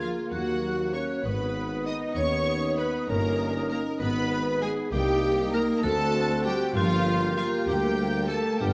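This sneaky, mischievous cinematic excerpt in a slow 6/8 at 65 BPM opens with a lush violin section carrying the melody alongside a very quiet, metallic vibraphone played with hard mallets, while a bright solo clarinet, an airy flute section and a warm background violin section trace second lines over a mellow bassoon, a hushed viola section and sustained French horn chords, above a bass of punchy tuba, rich cello section and focused double bass section, everything set in a wet scoring-stage reverb as the harmony settles into G minor at 4.9 s.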